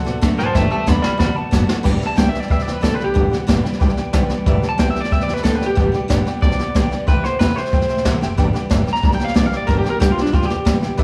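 Captured in a small, lightly reverberant room, this rowdy, upbeat rockabilly fragment has a natural sound. It opens with a clean electric guitar solo over a drum fill from 0.6 to 1.9 seconds, and a twangy, slightly broken-up electric guitar through a small old amp carries the melody up front with analog delay. Brushes on a jazz kit with dark cymbals and a boomy kick drive things forward, while a woody, thumpy pizzicato upright bass, a warm picked steel-string acoustic guitar and a brilliant, polished upright piano in the background fill out the sixth chords on D, G and C.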